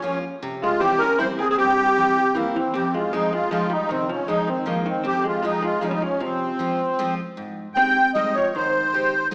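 A brisk 3/4 musette waltz at 155 BPM in F minor, charming and whirling, puts a reedy, shimmering musette accordion up front on the melody over a dark, clean, compressed hollow-body jazz guitar carrying a second line and a full-bodied picked steel-string acoustic guitar on accompaniment, all bathed in a wet concert hall reverb with a small speaker sound, moving through C, Fm7 and Fm before shifting to Abmaj7 at 7.4 seconds in this brief cut from a longer piece.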